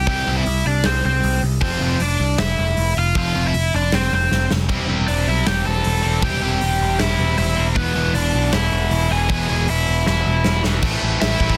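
A straight 4/4 punk rock pulse at 156 BPM rides in half time, with the big rock drum kit's tight kick, medium-tuned snare, hi-hat and crash ringing in a bright stone room, broken by drum fills at 4.3 and 10.1 seconds. Up front, a compressed overdriven electric guitar carries a raw, angry melody over a growly picked bass, while a tight distorted guitar and a sludgy, warm guitar in the background grind out riffs through C, F, C/E, E and Am. A double-tracked distorted guitar joins the riffing at 4.7 seconds, all packed into a dense, heavily limited modern master with little reverb in this short cut from a longer piece.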